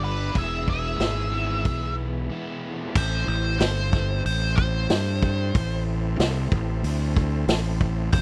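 Blues rock power trio meets southern rock in this brooding, gritty fragment of a longer piece in A minor at 92 BPM, where a dark, octave-fuzzed lead guitar states the melody until 2.0 seconds over a nasal, parked-wah second guitar line, a crunchy double-tracked riff guitar, growly fuzz bass up front, a thick overdriven tonewheel organ with chorus vibrato and key click sitting in the background, and a vintage drum kit with dark cymbals and a punchy kick entering at 0.4 seconds, all captured in a dry, close 1970s-style small room before a short break gives way to a lead guitar solo from 3.0 seconds.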